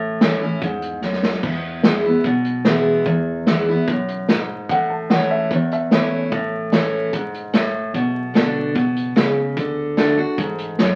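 A bright, full-bodied picked acoustic guitar opens this sunny, down-home honky-tonk and classic country excerpt at 148 BPM in A major alongside a deep, mellow sine sub bass in the background, and they are quickly joined by a roomy acoustic drum kit played with bundle sticks, its dark cymbals and punchy kick rolled off at the top. A short drum fill at 1.0 seconds leads into the main passage, where the chords move from A to E, then through Bm and D. Between 4.7 and 7.1 seconds a woody upright piano adds a high second line, all set in a club reverb with the crackle of a very old 78 rpm record.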